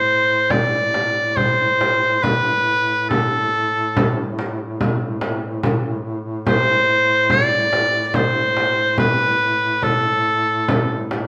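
A clear oboe with light vibrato carries a solemn, longing, classical-style melody up front in this rubato Caucasian folk lament in A minor at 71 BPM in 4/4, tuned to A4 = 438 Hz, over a warm, soft-attacked duduk drone on A2 and a small, bright frame drum that enters at 0.5 s with a distant, large-room sound, all played live in one room with moderate studio reverb and cut from a longer piece.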